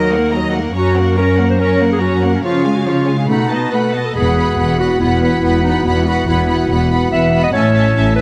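In a straight 4/4 at 142 BPM, this soaring, triumphant stretch of heroic adventure film score opens with a lush, focused violin melody over a second violin line with an intense, distant edge, a solo clarinet with a smooth top, a rich, smooth viola accompaniment and an up-front chamber cello bass, all moving through Ebm, Gb, Db and Cb7. A dark, roomy French horn section slips in at 4.1 s to sustain chords in the background, and at 4.2 s the music shifts into E major on an Esus2 chord as a rich, bowed double bass section joins the low end, before the harmony lands on A at 7.5 s. Light reverb and close, detailed microphones keep the vibrato-rich strings present in this excerpt cut from a longer piece.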